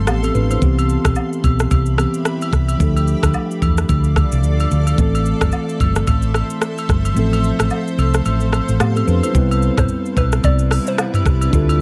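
A light reverb wraps this sunny, breezy afrobeats excerpt, cut from a longer piece, with a swung sixteenth-note feel in four. An electronic afro-pop drum kit sits up front with a knocking kick, smooth hi-hats, rim clicks, shaker and toms. Beside it, a dark, round hollow-body short-scale electric bass, fingered and amped, punches up front in the mix. A mellow, clean tine electric piano carries the accompaniment through chords such as Cmaj7, Dm and Am. Behind it, a granular cloud pad holds blurred, evolving chords in plate reverb, joined by acoustic woodblock and agogo bells with a small-room sound. The kick drops out from 7.2 to 9.3 seconds, and at 9.8 seconds a bouncy, detuned square-wave pluck adds a brief melody with chorus, tape echo and plate reverb.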